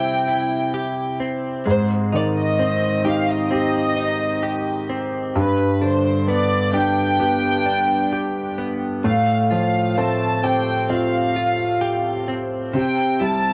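Hopeful and heartfelt, this short fragment of a pop ballad moves at a slow 65 BPM in a straight 4/4. A studio violin section carries the melody up front, its bowed ensemble tone reedy and smooth on top, with light vibrato and a gut-string, period-style color. Beneath it, a concert grand piano plays the accompaniment, intimate and polished, with deep bass, long sustain and audible action noise, all shaded by cassette tape. A clean electric guitar, recorded direct, adds picked, compressed arpeggios with a scooped tone, a lush chorus and the same tape character. The harmony travels from C through Abmaj7, G and Fadd9/A before settling back on C at 12.7 seconds, with all three parts sounding across the full 13.5 seconds. A moderate spring reverb gives the home cassette recording a gentle sense of space.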